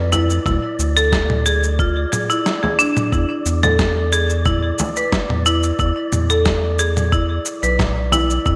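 Warm and mystical, this organic downtempo excerpt moves at 90 BPM in 4/4, with a bright marimba struck by hard mallets carrying up-front arpeggios through a digital delay while a round, deep analog bass holds the low end. A gritty, overdriven sampler-style kit with a fat snare, shaker and toms sits beside a thumpy electronic kick that enters at 0.5 seconds, and a deep, large frame drum played with soft hands adds saturated weight. Above them an airy, breathy wind-like noise texture hangs with its own reverb and subtle chorus, all set in a lush hall ambience with a bright 1980s-style digital sheen, the harmony moving to Esus4 at 3.1 seconds.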